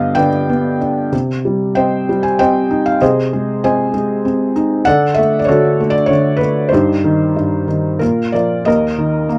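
Close, detailed microphones and very little reverb put a felt-muted upright piano up front, so the noise of its action and the thin felt are clearly audible. This brief classical fragment for solo piano is cut from a longer piece, and it has a brooding, moody character in C minor. The piano is tuned slightly low, at A4 = 437 Hz. It moves at around 96 BPM in 3/4, though the rubato feel keeps the pulse flexible and lyrical. The mellow, intimate tone spans from Eb2 up to Ab5, passing through harmonies such as Cm, Ab/C, D and Bb before reaching Eb5 at 8.7 seconds. The fragment breaks off at 9.4 seconds.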